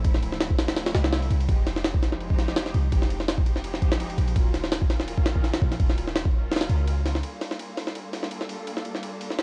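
Drum and bass in the jungle vein at 167 BPM in G minor, this dark, raw fragment pairs gritty, pitched-up sampler drums, with a thumpy kick and medium-tuned snare up front under studio reverb, with a deep, boomy 808-style sine bass that carries a noise layer. A lush, biting bowed string section holds sustained chords through a low-pass filter, moving from Dm9 through Fm9 and Ebm9 to Gm9. The kick drops out at 6.5 seconds and the bass stops at 7.2, leaving strings and drums in a lo-fi, home-recorded cassette sound.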